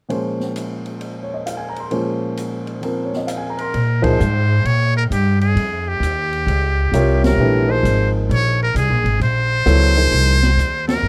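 Close, detailed microphones and a light reverb give this modal jazz excerpt an intimate studio sound, with a searching, intense mood at a swung 132 BPM in 4/4, centered on Bb dorian and opening on a Bbm9 chord. A clear upright piano with long sustain sets the harmony from the start, over an acoustic drum kit that stays in the background with dark cymbals, a high-tuned snare and a boomy kick. At 3.6 seconds a trumpet with a metal mute takes the solo melody up front, buzzy and brilliant yet thin, with light vibrato and a soft attack. The pizzicato upright bass arrives almost at once, thumpy and dark on gut strings, sitting prominently in the mix. The piano drops out briefly and returns at 6.9 seconds, and the band hits shared accents through the second section before the excerpt breaks off.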